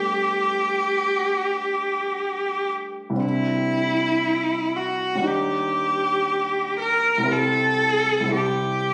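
Classical impressionist duo in a pastoral, luminous mood at a rubato 59 BPM in 4/4, this short cut from a longer piece sets a rich, focused, bowed solo cello melody with vibrato and a smooth top up front over an intimate grand piano accompaniment that sits lower in the mix with audible action noise, moving through Gadd9, Cadd9, Ebmaj7 and C6, all captured on a phone in a large studio with moderate reverb.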